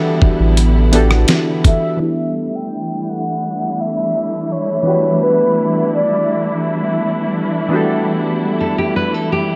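Softened by light reverb, this moody, sensual contemporary R&B excerpt at 84 BPM in E minor rests on an Em11 chord as a mellow, horn-like synth lead with vibrato sings over round, chorused analog keys and bowed studio strings that pump under sidechain, while a deep sine sub bass and a gritty, thumpy sampler-style drum kit sound briefly near the start, a filter sweep unfolds from 2.0 seconds, and a bright fingerpicked nylon-string guitar enters at 8.6 seconds.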